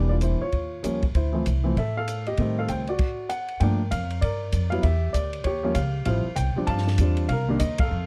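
A cool, moody jazz piano trio swings briskly at 195 BPM in D minor, with an upright piano carrying the melody in an intimate, up-front tone where the action noise is audible, over a woody, pizzicato upright bass with steel strings and a compact cocktail drum kit with dark cymbals, a high-tuned snare and a punchy kick. The dry, dark production keeps the trio close and unadorned, and the band drops out in a stop from 3.0 to 3.6 seconds before the second section opens on Gm7. The passage is cut from a longer piece and hits a band accent at 7.8 seconds over a Cm7 chord.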